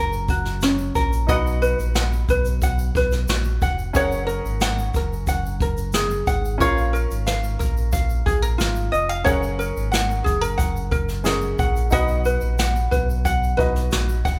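A fingerpicked ukulele sits up front with a light, warm tone, alongside a deep, full sine sub bass with octave and a clear baby grand piano with short sustain, in this heartfelt, sunny acoustic pop excerpt in F# major at 90 BPM. A jazz brush kit with a boomy kick and medium-tuned snare comes in at 0.3 seconds, while a grainy, bright tube shaker stays in the background of a live-room sound with light reverb. The chords move through F#add9, B and A#m, in a straight 4/4 feel.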